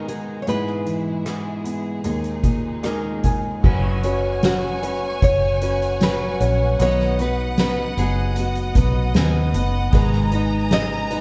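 Pop ballad fragment with a heartbroken, longing mood, led by a bright, full-bodied nylon-string guitar playing the fingerpicked melody with audible finger squeak, over a concert grand piano with deep bass, arpeggios from a fingerpicked plugged-in archtop guitar, sustained chords from a lush, focused studio string section, and a dark soft-mallet drum kit with a punchy kick and fat snare. The piano plays a fill from 2.4 to 3.6 seconds, and at 3.6 seconds a symphonic violin section with smooth, even vibrato adds a high second line while a round, foam-muted vintage electric bass enters up front. The band plays live together in a stone room with moderate reverb.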